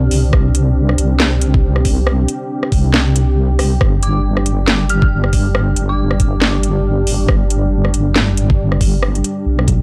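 This cavernous, brooding deep dubstep excerpt opens with a dark analog pad holding slow-blooming, detuned sawtooth chords with a chorused sheen, while a deep, soft wobble bass sits up front beneath it, compressed and sustained. At 138 BPM in a half-time feel with a light swing on the sixteenths, the garage kit enters almost at once with a cracking snare, rim clicks and metallic hats, joined at 0.3 seconds by a knocking electronic kick. The drums carry a small-room ambience and a tape-warm tone. The harmony moves from a C5 chord to a G5 chord at 3.8 seconds. Between 4.0 and 6.5 seconds a quiet, eerie FM bell rings high above the mix, its inharmonic, mellow tone decaying through chorus, phaser and dub echo. The whole recording is dry and gritty, with a hardware and cassette-tape character.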